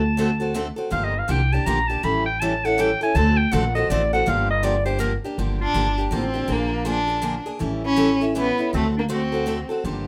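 Acoustic string swing in the jazz manouche style, this virtuosic excerpt in three moves over a minor-key progression, with a punchy, vintage-toned clarinet taking a forceful jazz solo with light vibrato from the start until 5.4 seconds. Underneath, a boxy parlour steel-string guitar is picked up front with fresh strings, while a thumpy pizzicato upright bass with gut strings adds a dark, woody low end. At 5.6 seconds a single bowed violin enters up front with an expressive, warm voice full of vibrato and portamento, all set in a moderate studio reverb.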